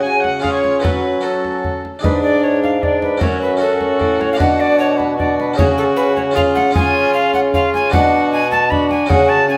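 A wet stone-room reverb frames this brief, solemn and courtly renaissance-style consort dance in 3/4 at 153 BPM, set in F# harmonic minor and cut from a longer piece. An airy alto recorder with a crisp, chiffy attack carries the expressive melody over a dark, nasal gut-string violin on the second line, while a clear, punchy trombone and a bright Flemish-style harpsichord accompany above a mellow, distant bassoon bass. A deep frame drum struck with hard hands sounds close and dry from 0.2 to 9.3 seconds, as the harmony moves through F# minor, G# diminished, B minor and a C# suspension that resolves to C#.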